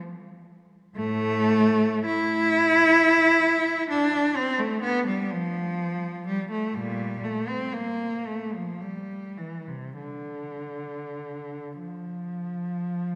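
A single bowed cello enters at 1.0 s, up front, rich and focused with vibrato, playing a meditative, mournful classical passage in D minor, cut from a longer piece, in a free, rubato 6/8 at roughly 23-45 BPM dotted quarters, its line ranging from A2 to E4 and sounding until 13.2 s within a wet church reverb that lingers for 2.8 s.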